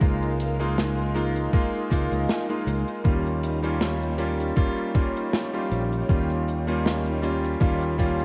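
Faded and dreamy, this short vaporwave excerpt drifts at 79 BPM in 4/4 with a lightly swung sixteenth feel, moving from Db69 to Eb7 at 3.1 seconds, all coloured by worn, warbling cassette tape with pitch drift and a dulled top end. An up-front electric grand piano with a clangy low register, long sustain, subtle chorus and tape echo carries the accompaniment over a fretless electric bass thickened by analog chorus, while a very quiet, silky string machine holds mellow chords with slow attack, phaser and ensemble chorus. Meanwhile, a thumpy, overdriven electronic kick sits at the front, joined by a tight acoustic kit's hi-hat and medium-tuned snare in a big room.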